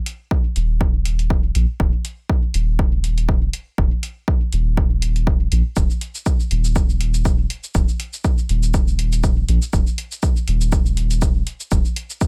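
Electronic hi-hat and cabasa open this hazy, nocturnal dub techno excerpt, with a punchy analog kick drum arriving up front at 0.3 seconds, both re-recorded in a small room. At 0.6 seconds a deep, round sub bass with a triangle and square wave character joins, its fast attack and sustained notes pumping from sidechain compression between Eb1 and Bb1. The groove sits at 121 BPM in 4/4 with a gentle 55% swing on the sixteenths, in a dry mix with little reverb.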